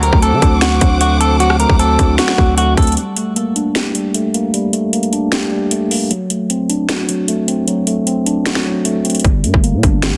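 Trap hip hop with an eerie, menacing half-time feel, where a dark, hollow-bodied electric guitar melody with digital delay and lush bowed strings open over growling 808 bass and hard-clipped, overdriven trap drums with metallic hats and finger snaps, until at 3.0 s the guitar, strings and bass drop out for a break in which a mellow, filter-swept tine electric piano carries on with the drums before the buzzy bass returns at 9.2 s in this dense, heavily limited excerpt.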